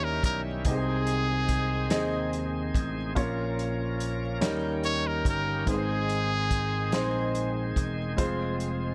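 A slow 6/8 pulse carries this short slice of soulful, jubilant gospel, cut from a longer piece and set in a small, intimate room. A brilliant, forceful trumpet takes the solo melody up front in a jazz style, with scooped notes and light vibrato, before falling silent at 7.7 s. A grand piano with long sustain and audible action noise accompanies close by, while a bright, shouting tonewheel organ holds full chords through a slow rotary speaker, lightly overdriven with key click. Underneath, a vintage slap bass growls with an amped punch, and a soul drum kit of hi-hat, kick and snare enters at 0.2 s, dark and smooth with a rolled-off top and a warm, punchy kick. The harmony opens on an Eb7b9 and passes through Bbm and Eb7 to settle on Ab before turning to Fm at 8.2 s.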